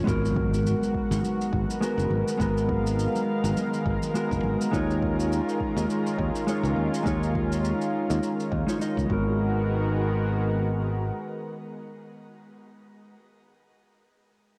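A relaxed 103 BPM groove in 4/4 with a 57% swing on the sixteenths sets this warm sunset chillout excerpt in G# dorian, moving from G#m9 to D#9sus4 and back. A deep, overdriven electronic kick and a faint overdriven shaker run until about 9 seconds, joined briefly by very quiet, bright congas and a faint electronic impact at the start, while a growly, up-front fingered electric bass with tube saturation anchors the low end. Above it, a dark, clean, compressed electric guitar with tape colour, analog delay and shimmer reverb plays the accompaniment against a thick, warbling detuned sawtooth pad with chorus and a slow attack, all set in a lush hall reverb with a homespun cassette character.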